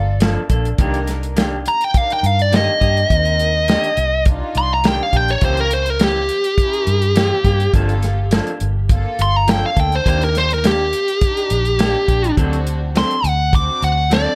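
Over a straight-eighth soul blues groove from a dry, dark drum kit with a tight kick and a round, foam-muted electric bass up front, a smooth, overdriven lead guitar takes a soulful, smoky solo from 1.7 seconds, while a twangy, slightly broken-up rhythm guitar with spring reverb and analog delay plays stabs and a distant, reedy string section holds bowed chords through a Gm9 to Cm9, C#dim7, Ebmaj7 and D7 progression in this short cut from a longer piece.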